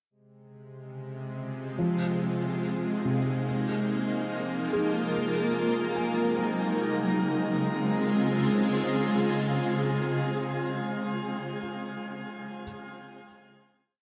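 Luminous and peaceful, this short ambient piece in Db major moves at 72 BPM in a straight 4/4, bathed in a wet shimmer reverb with a long tail. A bowed-like drone enters first at 0.6 s, a string-like, tense sawtooth tone with detuning, a noise layer and vibrato, sitting bright in the background. The granular cloud pad arrives up front at 1.4 s, fading in across the opening section with blurred, detuned sine chords that shift slowly through Dbmaj7, Abadd9/C and Ebm before settling on a final Dbmaj7 at 6.8 s. Behind them, a felt-muted upright piano plays arpeggios in four slow loops of unequal length that drift against each other, its dark, intimate sound carrying audible action noise and a diffuse ambient delay while it fades out through that first section. The pad and drone hold the closing chord, and the piano's arpeggios are the last thing heard.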